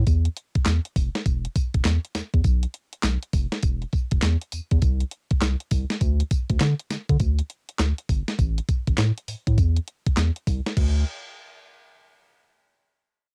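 Bouncy and punchy, this R&B cut in the new jack swing style moves at 101 BPM in 4/4, with a 64% swing on the sixteenths giving it a loose, head-nodding lilt. A crisp 8-bit digital drum machine sits up front with a sampler-style character, pairing a thumpy kick and a medium-tuned snare with handclaps, hi-hat, tambourine and a crash cymbal, all carrying a warm, tape-like quality. Alongside it, a round analog bass with a sine- and triangle-like tone runs from E1 to D3, its fast attack and sustained, dark, evolving notes filling the low end. Both parts play from the opening moments until about 11 seconds, and a brief new section arrives at 10.8 seconds, just before they stop. The sound is dry and close, with the intimate feel of a home cassette recording, and the piece is cut from a longer work.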